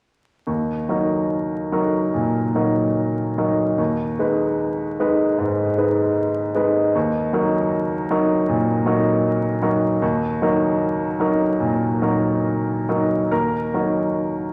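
This romantic classical character piece for solo piano feels stormy and passionate, its phrases pushed and pulled in a free rubato across a brief section cut from a longer work. The upright piano sounds clear and woody, sitting up front in a natural tone that spans from the low bass into the middle treble, wrapped in the wet bloom of a scoring-stage reverb and a vinyl crackle. A new section begins at 13.3 seconds, just before the piano falls silent at 14.5 seconds.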